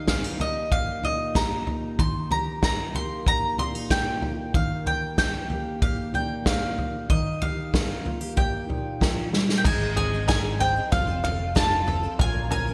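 Indie folk with a building arrangement at 94 BPM in 4/4, this uplifting excerpt opens in Eb with a brilliant, double-strung mandolin carrying the melody up front over a full-bodied fingerpicked steel-string guitar touched with subtle chorus, while a roomy, distant-sounding drum kit played with bundle sticks adds a punchy kick, dark cymbals and gated reverb. After a drum fill at 9.3 seconds, the fingerpicked guitar drops out at 9.6 seconds as the chords move through Ab, F and Bbm. A shimmering, octave-doubled twelve-string with ensemble chorus, a twangy banjo playing arpeggios through digital delay and a round, dark electric bass in the background all join, and the whole excerpt sits in a lush hall reverb with brilliant 1980s-style digital production.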